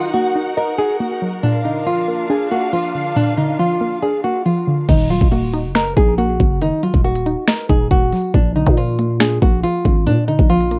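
A dry home recording on cassette, this brooding, melancholic half-time trap hip hop fragment opens with a fingerpicked nylon-string guitar melody, complete with finger squeak and analog delay, over a warbling, detuned, dusty pluck and a distant, woody symphonic string section that stops at 4.9 seconds, when a growling, buzzy 808-style bass and an overdriven trap kit enter up front with knocking kick, sharp snare, crisp hats, finger snaps and crash cymbal.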